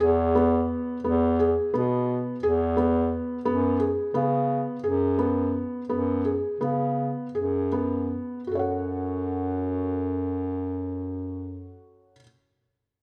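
Contemporary chamber music in 7/8, pensive and restless, in which a felt-muted upright piano plays soft, intimate arpeggios with audible action noise over a warm, vintage-toned bass clarinet carrying the bass line, both placed up front in light reverb, with the pulse slowing from 3.5 to 8.5 seconds in this brief fragment of a longer piece.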